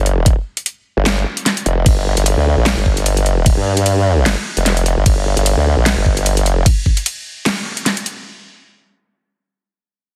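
A formant-sweep wobble bass opens this menacing, heavy wobble dubstep drop, its sawtooth-and-sine tone snarling with overdrive and chorus from F1 to G2 in G minor at 150 BPM with a half-time, lightly swung feel. A dubstep kit with a huge snare, metallic hats and ride enters at 0.1 s, and a knocking electronic kick arrives at 0.3 s to sit up front alongside it, both carrying a tape-like warmth. The mix is dry, dense and heavily limited, and the bass drops out at 6.6 s while the kit carries on to 8.1 s in this short cut from a longer piece.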